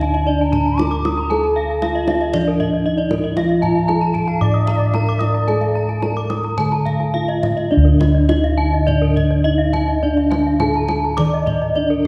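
Dark, round bossed gongs sit up front in this ceremonial, shimmering Balinese gamelan excerpt in D pelog, moving at 104-116 BPM in 4/4. Their beating bronze tones anchor the bass beneath a mellow, padded-mallet metallophone melody and two layers of ringing metallophone arpeggios, the horn-struck ones bright with the shimmering beats of paired tuning. An airy bamboo bansuri with a straight, slightly unsteady tone carries a second line until 6.0 s, a lower metallophone accompaniment adds body from 3.4 s to 7.7 s, and a deep, band-limited, vintage-sounding kendang plays percussion throughout, all heard from further back in a concert hall with a lush reverb.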